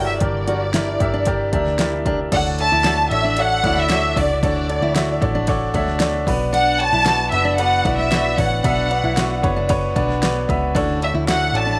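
Piano-driven pop at 114 BPM in D major with a warm, anthemic mood, this fragment of a longer piece sets a lush, vibrato-rich studio violin section on the melody over a woody, intimate upright piano with audible action noise, a full-bodied fingerpicked steel-string acoustic guitar riff and a round, foam-muted vintage electric bass, while an overdriven deep house drum kit with punchy kick, fat snare, hi-hat, ride and crash cymbals enters at 0.2 s, the mix sitting in moderate spring reverb and small room ambience as the chords move from Gm to Dmaj7 and Bm.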